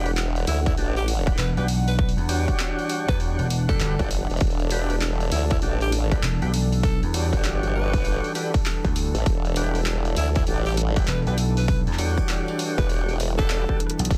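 A funky, gritty glitch hop excerpt opens on a soft, detuned sawtooth pad with chorus and sidechain pumping, smooth tonewheel organ stabs through a slow rotary speaker with dub echo, and an up-front, formant-swept wobble bass, before an overdriven dubstep kit of crash, handclaps, hi-hat and rim click joins; a raspy, growling jazz tenor saxophone solo with dub echo enters at 0.5 seconds, a punchy, layered electronic kick follows, and an amped vintage slap bass arrives at 1.4 seconds, riding a swung sixteenth feel in a dense, dry, heavily limited mix until a drum fill at 13.8 seconds.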